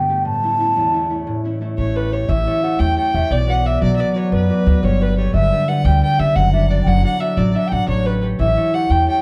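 Lively and cheerful, this Celtic slip jig in 9/8 moves at 118 BPM in A mixolydian, its mellow, hollow baroque flute carrying the tongued melody with vibrato from a slight distance over ringing, fingerpicked concert harp that sits up front. At 1.8 seconds a clear, focused fiddle joins with a quieter bowed second line, while a woody, thumpy pizzicato upright bass on gut strings anchors the low end. The dark production places the parts in a small room with moderate reverb, and the chords move from A7 through Bm and Gadd9 to D/F# before returning to A7 in this cut from a longer piece.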